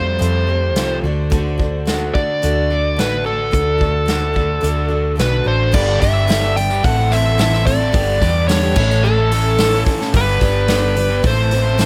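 Folk rock with a heartland rock lean, this hopeful, nostalgic clip moves at 109 BPM in a straight 4/4 in G major. A dark, smooth lead guitar carries the melody up front, its overdrive colored by tape echo, while a bright, full-bodied steel-string acoustic is picked underneath and a crunchy, double-tracked overdriven guitar plays a riff. A round, hollow-body electric bass sits forward in the mix, and a natural-sounding country drum kit with a punchy kick, medium-tuned snare, hi-hat and crash joins at 0.2 seconds. At 5.7 seconds the harmony shifts from Fadd9 and D to a pattern moving among G, Am and A, and a very quiet tonewheel organ enters with clean sustained chords through a slow rotary speaker, followed at 6.0 seconds by a faint, jingly tambourine. The sound is dry, with little reverb.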